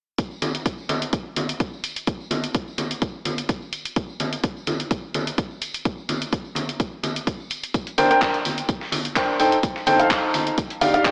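Uplifting and euphoric, this piano house excerpt in Bb major moves at 127 BPM with a light 16th-note swing, built on a punchy, up-front electronic kick and a tape-warm house kit of handclaps and hi-hat, with ringing tambourine and congas played by soft hands in the distance. At 7.7 s a very quiet, gritty sampler-style soul kit adds hi-hat, snare and tambourine, and at 8.0 s a boxy grand piano riff arrives up front over Bb69, F7 and Ebmaj9 chords, coloured by 12-bit sampler crunch, sidechain pumping and dub echo. A lush hall reverb and an AM radio tone frame the mix.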